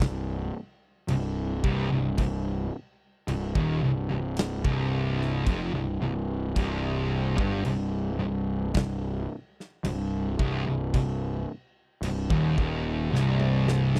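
Sludgy and ominous, this stoner and doom metal passage crawls along in a steady, straight 4/4, cut from a longer piece and resting on a single C minor chord throughout. Two thick fuzz guitars play the riff low, between C2 and G2, from start to finish, one carrying a warm distorted tone while the other sits in the background with a darker edge. Beneath them, a picked electric bass with overdriven fuzz sounds round and punchy, placed up front and reaching down into the deepest register. A big acoustic rock kit drives the weight with a punchy kick, a medium-tuned snare, toms and crash cymbal, its airy, polished sound also sitting close to the listener. The recording has the dry, close feel of a 1970s-style studio in a small room, and a drum fill arrives at 13.1 seconds just before the cut at 14.0 seconds.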